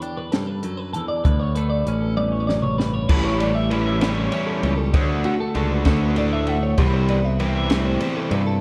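Intricate and wistful, this short cut from a longer math rock and midwest emo piece moves in 6/8 with a straight feel. Two bright, clean twelve-string electric guitars carry the harmony: one plays low accompaniment while the other spins high arpeggios through a digital delay, both compressed and twangy. A compact cocktail drum kit sits underneath with a small-room, smooth character, a high-tuned snare and punchy kick, and a drum fill beginning at 2.2 s leads into the next section. A growly, up-front picked bass joins at 1.2 s, and a crunchy, double-tracked overdriven guitar riff enters at 3.1 s to thicken the texture. The chords drift from Em7 through Dmaj7 and A9 to Cmaj7, all set in a moderate recital-hall reverb with a dark, warm production.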